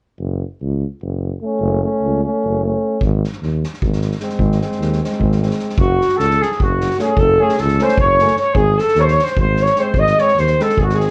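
A mellow, soft-attacked tuba opens this restless, fiery Balkan brass band excerpt at 0.2 s, anchoring the bass in F# dorian with a raised fourth. The groove runs in 7/8 at 302 BPM counted in eighths, with a straight feel. A breathy euphonium with scooped notes and vibrato soon joins alongside a brilliant, punchy trombone that sits distant in the room. A soft-mallet drum kit enters at 3.0 s, its medium-tuned snare and kick heard at a roomy remove, as the harmony moves from F#m to G#. At 5.8 s the melody arrives on a warm, up-front cornet touched with slapback echo, while a clear, smooth-topped alto saxophone with vibrato carries a second line in the background. Moderate studio reverb surrounds the band, and the whole track carries the worn, warbling pitch drift of old cassette tape.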